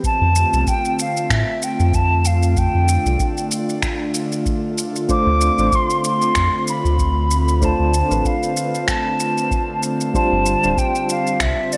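This relaxed sunset chillout clip opens at once on an airy, breathy pad holding sustained chords through chorus, alongside a deep electronic kick and a layered bed of electronic shaker and finger snaps, the shaker and snaps carrying a tape-warm, gated studio reverb. A mellow, hollow silver concert flute carries the melody up front with vibrato and a crisp attack, its line trailed by digital delay. Beneath it, a round analog bass, dark and sustained, sits prominently in the mix. At 5.1 seconds, soft electric-piano-like synth keys join as accompaniment, gentle and decaying, shimmering with chorus and tremolo. The lightly swung groove moves from F6 to Dm7 and then to G7sus4, framed by a moderate plate reverb and bright 1980s-style digital production.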